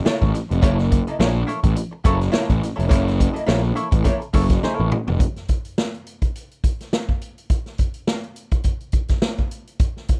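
A gritty, energetic funk groove with a 16th-note swing, cut from a longer piece, opens on a single F#7#9 chord with a dark, clean hollow-body archtop guitar comping through a wah. Beneath it a fuzzed, overdriven picked electric bass sits up front and punchy, while a roomy, distant-sounding big-band drum kit with a boomy kick and medium-tuned snare drives the pulse on hi-hat, snare and toms. A drum fill at 4.6 seconds leads into a second section where guitar and bass drop out and the drums carry on alone until 10.2 seconds, all in a dry room.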